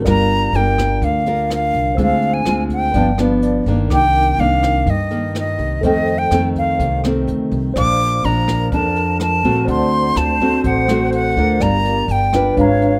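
Sunny and relaxed, this 125 BPM bossa nova excerpt in G minor sets an airy, vibrato-laden silver flute melody up front over a fingerpicked nylon-string guitar, a woody pizzicato upright bass, brushed drums with a boomy kick and rim clicks, and a worn, slightly out-of-tune tremolo electric piano in the background that adds a short fill at 3.2 seconds, while a mellow flute ensemble joins softly as a second line at 7.8 seconds, all under light reverb.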